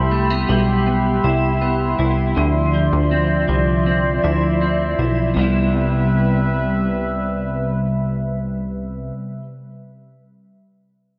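A straight, unhurried 4/4 pulse carries this floating, ethereal dream pop excerpt, cut from a longer piece. A warbling, nostalgic pad built from detuned sawtooth and triangle tones holds sustained chords up front, its slow attack and long release softened by chorus and its own reverb. Beneath it, a punchy, saturated analog bass plays short, funky plucks with a ring-modulated edge, while a clean electric guitar picks bright, twangy arpeggios through ensemble chorus and tape echo. The harmony moves from Cmaj7 to Dm9 at 2.4 seconds and returns to Cmaj7 at 5.4 seconds. A moderate spring reverb and an echo-heavy, softly rolled-off mix give the sound a hazy, lo-fi glow, and the guitar rings on alone briefly after the pad and bass stop at 9.1 seconds.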